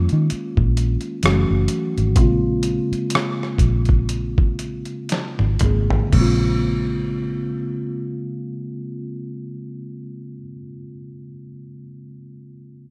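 R&B with a neo-soul lean, this short, introspective and soulful cut from a longer piece sits in Bb minor at a slow 57-66 BPM in 4/4, with a swung sixteenth-note feel and a tempo that slows down over the first 6.1 seconds. A mellow tine electric piano carries the accompaniment, clean and up front, moving through Eb9sus4, Gbm7 and Bbm9 and playing on until 12.9 seconds. Beneath it, a vintage muted fingered electric bass gives a dark, round, punchy low end, amped and foam-muted, stopping at 10.4 seconds. A boom bap sampler-style drum kit, compressed, pitched down and gritty, brings a thumpy kick, a medium-tuned snare, rim clicks, hi-hat, toms and crash, with a tape-warm character and the air of a large room, and closes with a fill from 5.1 seconds before dropping out at 6.4 seconds. Light reverb and a rough home-demo mix give the whole thing an unpolished quality.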